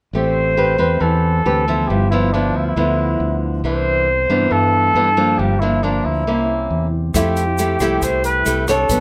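A straight 4/4 bossa nova groove at 137 BPM in A minor sets a smooth, melancholic mood in this short excerpt, carried by a full-bodied, fingerpicked nylon-string guitar and a direct, up-front fingered electric bass moving through Am9, G6, Cmaj9, Gm7 and C7b9 before landing on Fmaj9. A dark trumpet with light vibrato sings the melody in a roomy jazz style, sounding distant yet up front. At 7.1 seconds an open jazz drum kit enters with hi-hat, boomy kick and rim click, joined by a grainy, bright egg shaker in the background, all under light reverb.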